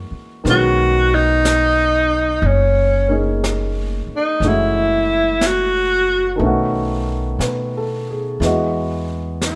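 A slow swung 4/4 at 60 BPM sets up this wistful, intimate jazz ballad, a short fragment cut from a longer piece, with a polished, present baby grand piano comping and a woody, thumpy pizzicato upright bass up front from the start. At 0.5 s the brush kit joins with hi-hat and a high-tuned snare, while a breathy tenor saxophone takes the solo melody in a whispered subtone, with mellow vibrato, soft attacks and scooped notes. The harmony moves from B69 through F#m7 and B9 to a closing Emaj9, and a moderate large-studio reverb gives the sax a distant, roomy glow.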